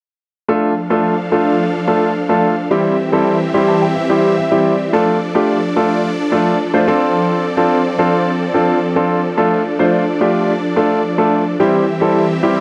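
A polished grand piano sits up front, playing a bittersweet yet energetic pop accompaniment and adding a brief fill between 3.3 and 4.9 seconds. Alongside it, huge, lush supersaw chords of detuned sawtooth unison hold sustained harmonies with a fast attack, moving through Dm, C and F6 in this short section cut from a longer piece. Light reverb and studio ambience surround the mix.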